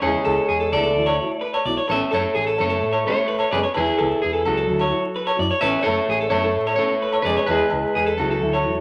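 An electric guitar at the edge of break-up leads this danceable highlife guitar band excerpt in A major at 128 BPM, carrying the melody up front with a twangy, fingered tone and a splash of spring reverb. Beside it, a second electric guitar through a small old amp plays bright, picked arpeggios with a lo-fi bite, while a thumb-plucked nylon-string guitar adds classical-style accompaniment in the background. A round, punchy fingered electric bass anchors the low end, and ringing agogo bells sit close and dry behind the band. From 0.1 seconds a mellow trombone joins with a jazz-style second line, its scooped notes and light vibrato clearly present. The chords cycle through E, Dadd9 and Aadd9, and the whole fragment sits in a wet studio reverb with a layer of vinyl crackle, giving it the feel of a well-loved record.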